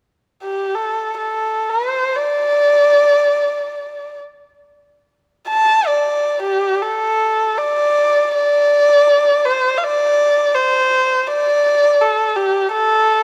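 Chinese traditional music in free time, this wistful and graceful passage is cut from a longer piece. A single erhu carries the melody from 0.4 s to 13.2 s, ranging from G4 to A5 with the instrument tuned to A4 = 439 Hz. Its dark bowed tone has a soft attack, light vibrato, portamento and an airy quality to the bow, while the top stays smooth. Close, detailed microphones set the player up front in an intimate way, and a moderate concert hall reverb with a 2.1 s decay surrounds the line. At 6.8 s the music moves into a second section that runs to the end.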